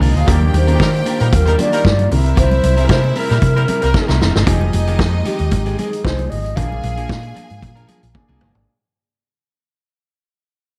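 A small room ambience surrounds this short, glamorous disco cut, with a gritty, saturated vintage drum kit and a dark, round hollow-body bass up front, driving a danceable, straight 4/4 groove at 114 BPM in F dorian. A breathy, mellow alto flute carries the melody from 0.6 s, sounding distant and unsteady with a soft attack and vibrato, while a clear, lush string section plays a bowed second line. In the background, a slightly broken-up, picked electric guitar with spring reverb, a polished baby grand piano with long sustain, and a tight pop-style horn section playing stabs with tape echo until 4.2 s fill out the accompaniment. Very quiet congas with damped, thick skins add percussion beneath the kit, which plays fills leading into the second section and again at the close. The harmony moves from Ebmaj7 and C7 to Fm9 and Bb7, and the music fades out across its second half, ending on a piano fill.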